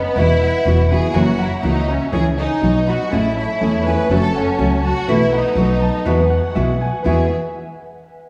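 A clear, intensely vibrato-laden violin section carries the melody in this festive, romantic mariachi excerpt in E major at 122 BPM, with a dark, portamento-shaded second violin section sustaining chords in the background, a bright, ringing concert harp playing arpeggios through tape echo, a fingerpicked nylon-string guitar with finger squeak accompanying, and a thumpy, woody pizzicato upright bass up front, all set in a recital hall reverb as the harmony moves from Esus2 through C#m and Amaj7 to a closing Eadd9.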